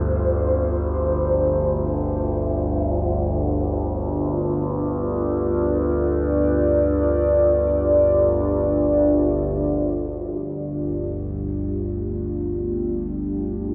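Dark ambient drone in free time, this cavernous, desolate passage is cut from a longer piece and runs just under 14 seconds. A deep, moody pad holds sustained chords in the middle register, its detuned sawtooth unison blended with sine, triangle and a sub octave, then wave-folded and ring-modulated into a dark, warm tone. Beneath it, a low drone of sawtooth and sine with ring modulation carries resonant, moving overtones that keep the bottom end in motion. Both parts sound from the first moment to the last, each with slow attacks, long releases, chorus and built-in reverb, and both sit up front in the mix. The harmony rests on a G5 chord throughout, and the whole is bathed in a huge, wet reverb with a tail of 8.1 seconds, shaped by a dark, warm production.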